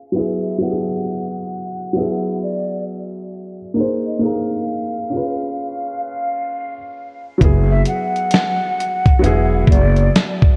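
Reflective and hazy, this lo-fi hip hop fragment opens with a warm upright piano playing short-sustained sus2, add9 and seventh chords under a filter sweep. Above it, a breathy, mellow concert flute carries the melody with vibrato, a crisp attack and an unsteady delivery, trailed by a diffuse ambient delay. At 7.4 seconds a gritty, compressed sampler-style drum kit with a thumpy kick arrives alongside an up-front pizzicato upright bass with woody gut strings, all swung on the sixteenths in a dreamy, reverb-soaked mix with a cassette-tape character.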